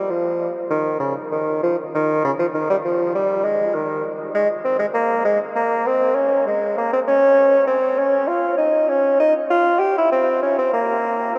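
A lone, warm bassoon opens this solemn, introspective baroque-style fantasia, moving freely in a rubato 12/8 between Db3 and G4 with a light vibrato in a classical manner. The instrument sits up front yet sounds distant and roomy, carried by a huge, wet reverb with an 8.0-second tail that places it in a vast, echoing space. The fragment runs from 0.0 to 11.4 seconds and is cut from a longer piece.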